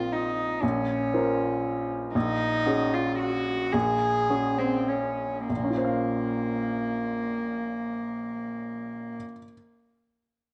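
A rubato pulse in 3/4 moves between 96 and 119 BPM and slows from 1.4 to 5.5 seconds before a new passage begins, giving this brief neoclassical piano and strings fragment a reflective, longing feel in Bb minor. An upright piano carries the accompaniment from Bb1 to F5, its woody, intimate tone sitting up front with audible action noise that keeps it close and natural. A single bowed cello plays the second line between Bb3 and Ab4, played sul tasto with a soft attack and a pure, floating sound, touched by a slapback echo. The harmony moves from Bbmadd9 to Gbadd9/Bb and returns to Bbmadd9 as the second passage opens. A wet spring reverb and small room ambience surround the pair, and the piece is cut from a longer work, breaking off around 9.5 seconds.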